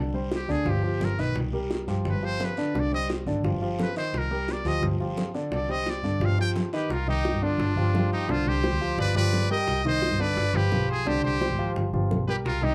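A dark, lightly reverberant production frames this short cut from a longer Cuban son and guajira piece in C harmonic minor, moving at a straight 173 BPM in 4/4 with a nostalgic, sultry mood. A warm grand piano plays arpeggios up front throughout, while a bowed double bass, one player with a soft attack and a pure, floating tone, carries the low end close to the listener. From 0.3 s, round, low-tuned bongos struck with hard hands sit in the background alongside a raspy, saturated guiro. A trumpet with a metal mute takes the melody as a jazz-style solo, buzzy and thin with light vibrato, standing out over the groove in the first half. At 6.7 s a second, brilliant trumpet joins with a punchy, forceful pop-style line that sounds distant and roomy, as the harmony keeps circling between C minor colours and G dominant chords, with augmented sevenths appearing earlier in the first section.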